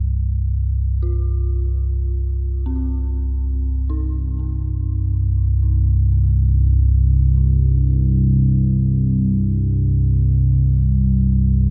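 Drenched in a deep cathedral reverb with a dark production, this unsettling, desolate dark ambient drone is cut from a longer piece. An up-front analog drone holds a sustained, detuned sawtooth and pulse-wave tone in the low register, evolving through pulse-width modulation, a moving notch, chorus and a filter sweep that runs throughout. From 1.0 s a much quieter, eerie synth bell fades in with inharmonic, full-bodied FM arpeggios in the middle register, its mellow tone coloured by chorus and tape echo.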